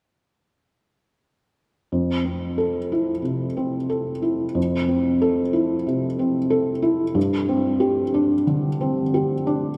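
Flowing in a free, rubato 4/4, this short fragment of neoclassical minimalist piano feels intimate and hopeful. A felt-muted upright piano plays alone from 1.9 to 9.8 seconds, ranging from F2 to A4 and moving from Fmaj7 to Csus2/G at 7.2 seconds, its thick-felt tone mellow, dark and close up front with a short sustain. A long, wet cathedral reverb places the soft playing in a church or concert hall.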